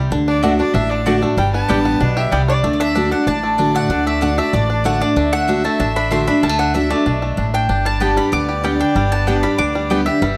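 Bright, twangy banjo arpeggios, a full-bodied picked acoustic guitar and a thumpy pizzicato upright bass open this lively, joyful bluegrass excerpt at a fast, straight four-beat pace. A nasal, reedy fiddle joins at 0.3 seconds and takes a solo turn over the opening bars, while the mandolin adds short picked stabs from 0.4 seconds. At 2.5 seconds the mandolin moves into the melody, its woody double strings sitting high above the band, and the fiddle carries on as a second line beneath it. The mandolin stabs return near the close. The guitar sits up front with audible finger squeak as the harmony moves between D and G. Close, detailed microphones and light reverb give the small acoustic group a clear, present sound.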